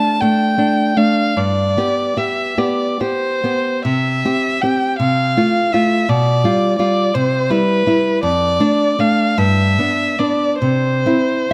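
A rich, smooth bowed violin sings the melody up front with even vibrato, its top end silky as it moves between B4 and A5 over a small, fingerpicked nylon-string guitar that sits just as close in the mix. This tender romantic duo in C major flows in a rubato 6/8 at roughly 44-57 BPM in dotted quarters, tuned to A4 = 438 Hz, with the guitar tracing a gentle cadence-rich progression from Dm through G and C to a final C at 10.6 seconds. Close, detailed microphones and light reverb give the warm acoustic pairing an intimate feel across this short section cut from a longer piece.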